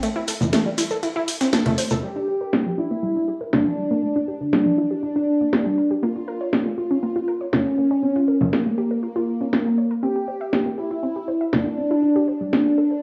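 This dark, hypnotic melodic techno excerpt at 120 BPM in G dorian opens on punchy, warbling unison pluck arpeggios with analog delay, joined by a tape-warm, layered house kit of congas, hi-hat and cracking snare, while a gritty, overdriven breakbeat sampler-style kit of ride and snare and a grainy shekere sit in the background, all hitting a band accent just before the soft supersaw melody arrives at 2.0 seconds. The smooth, full-bodied supersaw, low-pass filtered with analog delay and a moving notch, sits up front over the pluck and the house kit, which plays until 12.6 seconds. Chords pass from Am to Gm, Bbm and C in a dry, small-room space with moderate digital reverb.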